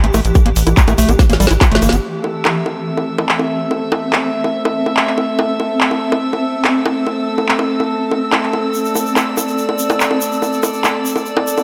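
Bathed in a lush hall reverb, this alien, intense psychedelic trance excerpt at 143 BPM in A minor sets a swarming, detuned, sidechain-pumped drone against a squelchy, gritty acid bass and a punchy sawtooth sequencer bass, both basses dropping out at 2.0 s as a dark, reedy chamber string section enters, while an up-front electronic kit of bongos, handclaps, bright hi-hat and woody snare plays throughout, joined by a tight kick heard only from 0.4 to 1.7 s and a grainy egg shaker.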